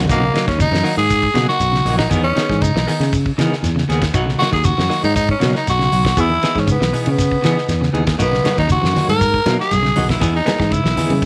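A small room with light reverb gives this short, funky afrobeat cut a close, lively sound, moving at 119 BPM in a straight 4/4 over an alternating Bmaj7 and Emaj7 progression. Up front, a raspy tenor saxophone carries the melody with a bright, gritty, punchy tone and vibrato, playing in a pop-style solo voice. Beneath it, a fingered electric bass sits warm, direct and amped, while a damped 70s drum kit supplies a tight kick, fat snare, hi-hat and dark-toned ride cymbal in a dry, mid-forward mix. Two electric guitars fill out the background: one at the edge of break-up picks low arpeggios, and a clean, fingered semi-hollow guitar plays stabs colored by tremolo and slapback echo. A grainy, mellow shekere runs throughout, and ringing, medium-tuned congas played with soft hands appear briefly at the start before returning at 8.2 seconds, lending the joyful groove extra bounce.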